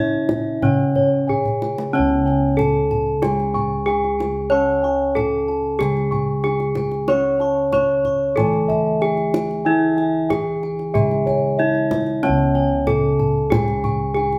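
Set in a moderate large-studio reverb with the band playing live in one room, this stately, hypnotic fragment of Javanese gamelan at 93 BPM in a straight 4/4 is led by a dark, smooth bronze metallophone melody up front. Beneath it sits a close-miked, dry, full metallophone accompaniment, while round, beating bossed gongs and a bright ringing metallophone trace high arpeggios over airy bossed-gong bass. A tight, acoustic kendang enters at 0.3 s and plays a fill from 1.3 to 1.9 s before the music settles into its longer second section.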